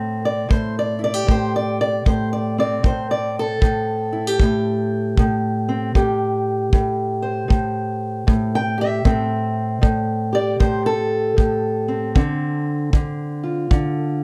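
A slow 77 BPM pulse in 4/4 with a swung eighth-note lilt sets the pace for this brooding, smoky acoustic country blues in A minor, cut from a longer piece. A tight kick drum, played with brushes and sitting up front in a small-room sound, comes in at 0.5 seconds and carries on until 13.9 seconds. Above it, a fingerpicked steel-string parlour guitar carries the melody, ranging from A2 up to G5, with a dark, woody, boxy tone and the dulled ring of old strings. The harmony rests on Am7 before moving to Dm7 at 12.2 seconds. A moderate studio reverb gives the close, up-front duo a touch of space.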